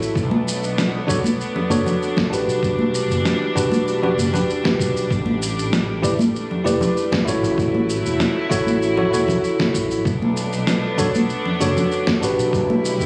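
A bell-like, clean tine electric piano sits up front at 97 BPM in E dorian, softened by a low-pass filter and trailed by digital delay as it carries the chords from Bm9 through Em9, A7sus4 and F#m7 in this wistful, relaxed sunset chillout piece. Beneath it, a distant, reedy string section with light vibrato and a gut-string, period-style tone holds sustained chords, while a punchy, direct fretless bass anchors the low end. Bright congas played with hard hands, a gritty, fat sampler-style snare with electronic shaker, and a thumpy compressed kick entering at 0.2 s fill out the groove, the whole captured on a phone in a room with a moderate concert hall reverb.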